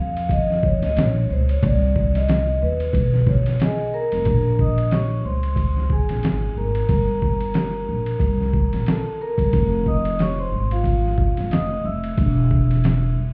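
Over a swung 91 BPM groove in 4/4 from a compressed, pitched-down sampler-style drum kit with a thumpy kick and medium-tuned snare, woody pizzicato upright bass and a ringing soft-mallet vibraphone carry a mellow, nocturnal jazz-hop excerpt in Bb minor, the vibraphone soloing throughout and moving from Db6 through Bbm9 to Fm7 before an E5 at 12.2 seconds, all heard muffled as if through a club wall.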